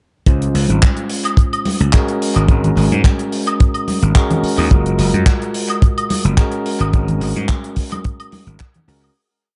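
A dry, up-front four-on-the-floor kick drives this groovy, feel-good nu-disco piece at 108 BPM in 4/4 with a light 16th-note swing. A tight funk kit adds a disco backbeat of handclaps, closed and open hi-hat and high woodblock with tape echo, while soft-handed congas sit in the background of a small room, and a growly, overdriven slap bass pushes a punchy syncopated riff up front. A tine electric piano, roughened by vintage 12-bit sampler grit and tape echo, holds drop-2 chords with syncopated pushes over Dbmaj7, Ab9sus4 and Gbmaj9 in Ab mixolydian, all within an echo-heavy mix with light studio reverb and a rolled-off top that plays as one long drop, fading out from 6.2 seconds to its end at 9.2.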